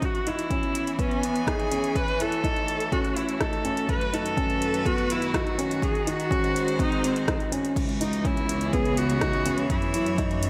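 Piano and strings electronica in C# minor at 124 BPM, hypnotic and moving, this short excerpt pairs an expressive solo viola melody, bowed with vibrato and portamento and sitting up front, against a rich, focused string quartet holding sustained chords that pump under sidechain compression, while a felt-muted upright piano repeats a mellow, boxy riff with audible action noise and tape echo. A punchy, overdriven electronic kick and a deep house kit of crash, metallic hi-hats and rim clicks drive the build-up over C#m7, F#m7, B7/F# and G#7, all set in a moderate echo chamber reverb. At 7.8 seconds the drop arrives as a soft-attack, sul tasto cello section enters on bass with tube saturation and its own sidechain pumping.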